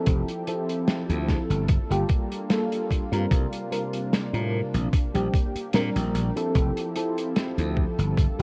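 A mellow, round FM electric piano with tremolo, chorus and tape echo opens beside a thick, detuned sawtooth pad at 0.0 s, before a growly, punchy slap bass, a thumpy sampler-style kick and a muffled soul kit of hi-hat and snare, both kick and kit coated in 12-bit grit, settle into a woozy, faded vaporwave groove at 74 BPM with a slight swing, drifting through Fmaj7, Gm9, C7sus4 and Bb69 in F major under light small-room reverb and cassette haze in this short cut from a longer piece.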